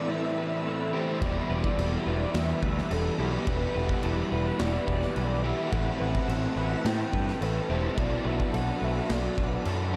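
Dreamy and hazy, this 10-second shoegaze and dream pop excerpt in E minor moves at 107 BPM, with a velvety synth lead carrying the melody over a swirling, phased string machine and faint clean guitar arpeggios. Two overdriven guitars, one with ensemble chorus and one semi-hollow with reverse reverb, play a crunchy riff in the background. At 1.2 seconds a growling, up-front overdriven bass and a big rock drum kit with bright cymbals and a punchy kick enter, all soaked in a huge ambient reverb that blurs the Amadd9, Em7 and Bm7 chords into a hazy wash.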